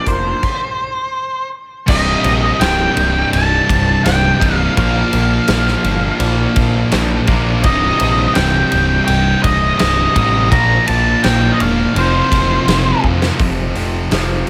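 A dark, up-front octave-fuzz lead guitar opens this angsty, cathartic quiet-loud alternative rock passage in C minor at 83 BPM, joined by a slightly broken-up guitar arpeggiating through a small old amp with chorus, plate reverb and delay, a round, growling overdriven bass and a huge, natural-sounding arena drum kit with a fat snare and punchy kick, before a sudden stop. At 1.9 seconds the band crashes back in over Cm and Bb, with a bright high-gain guitar and a thick fuzz guitar churning out riffs in the background while the lead carries the melody through plate reverb and delay, moving to Fsus4. A drum fill at 13.0 seconds leads to an F5 chord where the small-amp guitar returns at 13.4 seconds, all in a light reverb, cut from a longer piece.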